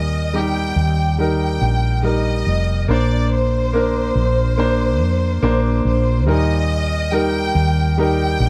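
A straight 4/4 pulse at 71 BPM carries this heartfelt, hopeful pop ballad excerpt, moving from Eb to Bbadd9 and back to Eb. A growly, round fretless electric bass sits up front beneath a bright, polished concert grand piano with short sustain, while a lush violin section with smooth vibrato carries the melody above, all three playing from start to finish. The sound is dry and close, in the manner of a 1970s studio recording.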